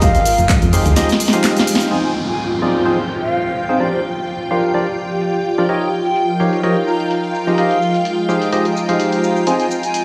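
Soulful, bittersweet piano house at 127 BPM in F dorian, swung lightly on the 16ths, with a mellow, hollow concert flute singing over shimmering string-machine violins, an airy phased pad and an up-front percussive organ stab riff, all bathed in a lush hall reverb. A punchy FM bass, a dry analog kick and a faint, rolled-off vintage kit appear only in the opening moments, where a drum fill and band accent lead into the change at 1.9 seconds. From there, a filter sweep moves over the tape-warm house kit's claps, hats, shaker and snare and over the organ stab, while an electronic downlifter falls until 5.7 seconds beneath chords moving from Fm7 to Abmaj7/F.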